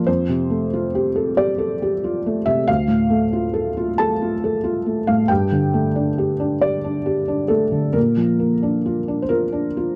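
A felt-muted upright piano plays alone in this melancholic, reflective fragment of a neoclassical minimalist piece in D minor, moving in a rubato 6/8 at about 46 BPM through Fadd9, Dm, Gsus2 and Bb, its mellow, intimate tone and audible action noise set up front in a dry, close 1970s-style studio sound with light reverb.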